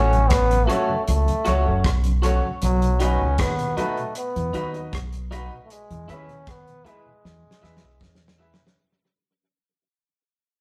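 A straight, unhurried 4/4 pulse sets this meditative, laid-back roots reggae excerpt in motion, carried by a damped 70s drum kit with a fat snare, tight kick, hi-hat and rim click, its dry hits trailed by tape echo, and a drum fill arriving at 7.2 seconds. Underneath, a deep dub fingered electric bass sits up front with a dark, round, punchy tone. A breathy trombone carries the melody with a soft attack, light vibrato and an intimate, whispered quality. A clean, twangy electric guitar and a woody upright piano playing stabs fill the middle. A mellow tonewheel organ murmurs in the background through a slow rotary speaker, complete with key click. The chords move from F#m to B to E, and the whole passage fades out from 0.0 seconds, captured as a rough rehearsal-room recording in a wet stone room.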